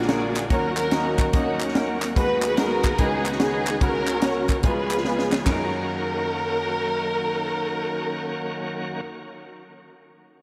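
Jubilant yet reverent, this uptempo gospel excerpt swings in 4/4 as an up-front, expressive string section carries the melody with vibrato, portamento and analog delay. A clear concert grand piano with deep bass accompanies, while a bright tonewheel organ holds shouting, lightly overdriven chords through a slow rotary speaker with key click. A punchy, high-tuned fusion drum kit and dry handclaps in the background drive the groove until a drum fill at 5.1 seconds leads into a new section, after which the drums stop at 5.6 seconds and the claps at 5.7, leaving strings, piano and organ floating in a dreamy, reverb-soaked mix.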